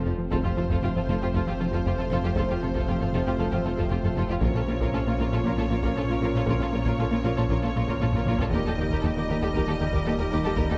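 Lush, vibrato-laden violins in two lines, clear violas, mellow French horns and a low foundation of dark double basses, tuba, deep sub bass and cellos open this tense, relentless hybrid orchestral and electronic film cue at 117 BPM. They are joined almost at once by a glassy, crystalline wavetable pluck arpeggio, a rubbery, nasal square-wave bass riff, tight vintage trombones and hard-stick taiko. An ominous rumbling drone creeps in at 1.4 s as the harmony moves from F to Bb minor to Eb in a dark concert-hall space, with a drum fill arriving at 8.0 s.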